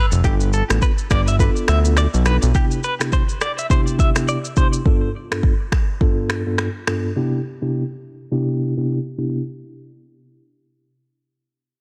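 A bright, twangy clean guitar riff opens this breezy, joyful afrobeats excerpt at 104 BPM in C major, its picked line treated with tremolo, low-pass filtering and digital delay before it drops out at 4.7 seconds. A fat, saturated analog bass with a detuned sawtooth bite and filter pluck sits up front only until 2.5 seconds, while an electronic afro-pop kit with a deep kick, finger snaps, rim clicks and shaker carries 12-bit sampler grit and soft clipping on the snare through 7.0 seconds. A mellow tine electric piano, filtered and heard through its built-in speakers, comps on G7 and Cmaj7 throughout under a filter sweep, light digital ambience and a dense, heavily limited modern master.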